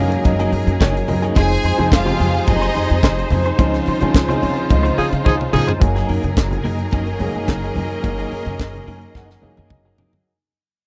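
A dry, close recording with a 1970s studio sound opens this glamorous, danceable disco passage, cut from a longer piece. A tight funk drum kit sits up front with a high-tuned snare, tight kick, hi-hat, toms and handclaps, while a woody, thumpy upright bass carries the low end and distant, soft-handed congas sit in the background. A boxy grand piano supplies accompaniment and fills, a twangy clean electric guitar with tremolo sits further back, and a smooth, even string section holds sustained chords over harmony moving from Gb69 through Fm7 to Dbmaj9. A brighter, intense string section adds a lush second line in two passages, and a punchy horn section arrives at 5.0 seconds with stabs. After a band accent and a drum fill, the music returns to Gb69 at 5.8 seconds and begins to fade out.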